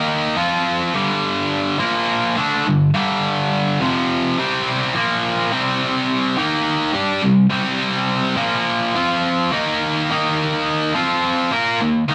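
The recording has the airy sound of a large studio captured live in a single room, with a moderate reverb tail that lets each chord hang briefly. It is a gritty, brooding rock excerpt cut from a longer piece, in a steady, straight 4/4 and tuned slightly flat to A4 = 436 Hz. A lone electric guitar carries it all, tight, bright and distorted, picked and double-tracked so it sits thick and up front in the mix. Its range runs from a low F2 up to Bb4. Across the 12.1 seconds it cycles through a dark run of power chords, moving from F5 and G5 to Bb5, C5 and Eb5 before settling back on F5 and Eb5.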